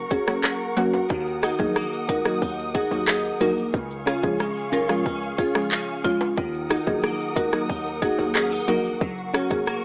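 Bowed studio strings hold sustained chords with vibrato and a sidechain pump, while a punchy, saturated 808-style bass hits underneath from the opening of this tough, bouncy dancehall cut. An up-front electronic kit of tight kick, hi-hat, rim click, handclaps and shaker arrives almost at once, with a woody marimba carrying the melody over a crystalline, detuned wavetable pluck that also pumps, and a tube shaker and timbales sitting close and dry in the background. From 1.1 seconds a clean, compressed electric guitar adds chorused arpeggios, and the mix sounds dry and gritty, as if heard through a small speaker.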